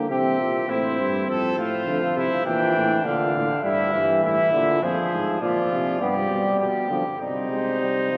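A straight 4/4 pulse at 101 BPM carries this solemn, serious classical canzona for brass ensemble, an imitative passage cut from a longer piece that settles into C minor from 4.8 s. A dark, punchy trumpet leads the melody from 0.1 s, over a bright, distant second trumpet, a clear trombone with light vibrato in the accompaniment, and a mellow bass trombone placed up front on the bass line. A long, wet cathedral reverb surrounds the ensemble, and the lead trumpet and bass trombone carry a vintage character.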